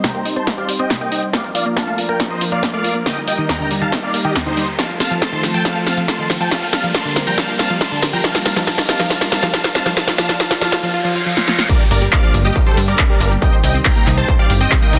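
This driving, euphoric uplifting trance excerpt in G minor at 139 BPM opens straight into a build-up, with a huge, detuned supersaw lead carrying the melody through phaser, tape coloring, delay and a low-pass filter sweep, all pumping against the beat. Beneath it, a thick, warbling unison pad holds sustained chords in the background, while a round analog pluck spins arpeggios through chorus and dub echo, its own filter sweeping across the first 11.7 seconds. A punchy, overdriven drum machine sits up front with snare, claps, hi-hat, shaker and crash, playing fills through most of the build, and a distorted, layered electronic kick sounds from the background in a large room. A riser enters at 3.0 seconds and a reverse cymbal follows, leading to the drop at 11.7 seconds, where a funky, plucky sawtooth bass joins moments later with a fast attack and a decaying tone. The chords move from Cm through Bb, Eb, F and Gm, and the sound is dense and heavily limited, bathed in a lush hall reverb.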